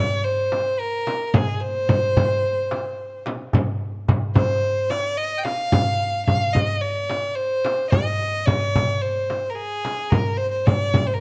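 A rich, focused bowed violin carries the soulful melody up front with close vibrato, ranging from Ab4 to G5 in C maqam bayati at 109 BPM, while a clay-shelled darbuka with a natural skin and a small, bright, compressed frame drum played with soft hands enter at 0.5 seconds to give this short, hypnotic Arabic maqam ensemble passage its straight 4/4 pulse under light reverb.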